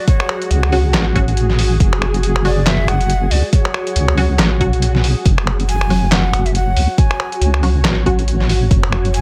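A breathy bamboo shakuhachi melody with dub echo floats over a cloudy, evolving granular pad from the start of this brooding, dark deep dubstep excerpt in F# minor at 139 BPM, where a half-time, swung groove forms from an up-front, tape-warm layered kick and a muffled, pitched-down sampler-style kit of snaps, handclaps, hi-hat and snare, while a deep, detuned wobble bass with chorus enters at 0.5 seconds beneath resonant, filtered dub chord stabs with phaser and echo, and a brief electronic swell sounds in the background at 4.5 seconds.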